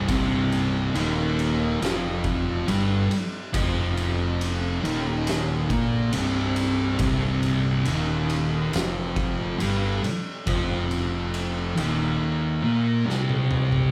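A pair of thick fuzz guitars carries the riff in this sludgy, brooding stoner and doom metal excerpt, one pushed up front with a warm, picked distortion and the other darker, both spanning C2 to Bb3 over a Cm chord at a crawling 69 BPM in 4/4. Beneath them a growly, overdriven fingered bass holds the low end until 12.2 seconds, while an oversized low-tuned drum kit with a boomy kick, fat snare, dark cymbals and gritty saturation pumps through the big room before a drum fill at 13.1 seconds. The band sounds like it is playing live together in a large studio, bathed in moderate reverb.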